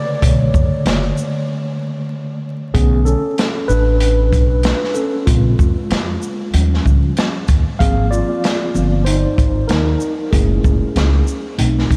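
A 95 BPM groove in 4/4 with a 60% swing on the sixteenths drives this short cut of nocturnal, cool jazz-hop, taken from a longer piece. A mellow tine electric piano opens alone at 0.0 seconds with a rootless Bm7, taking a solo that carries through the whole passage. The crunchy breakbeat kit and upright bass join at 0.2 seconds, with the kit's gritty, saturated hi-hat, shaker, tight kick and medium-tuned snare sitting up front with a rolled-off top, while the pizzicato bass adds a thumpy, woody low end. A break falls between 1.5 and 2.7 seconds before the second section begins, moving through Bm7, A#m9, D#9 and G#69 and settling on F#m9 at 10.3 seconds. The electric piano stays clean and soft-edged, heard through its built-in speakers, as a huge ambient reverb and vinyl crackle give the mix a dreamy, soaked haze.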